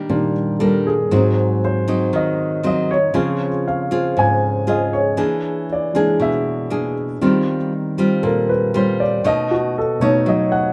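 Sophisticated and relaxed, this short bossa nova fragment at 118 BPM in 4/4 moves with a straight feel through rich chords such as Ebmaj7, Dbmaj7, E7#11 and Eb69, tuned slightly high to A4 = 441 Hz. A bright nylon-string guitar, fingerpicked in a classical style, sits up front beside a warm, intimate grand piano whose natural tone carries audible action noise as it takes a solo across the full 10.7 seconds. Light reverb gives the pair a gentle sense of space.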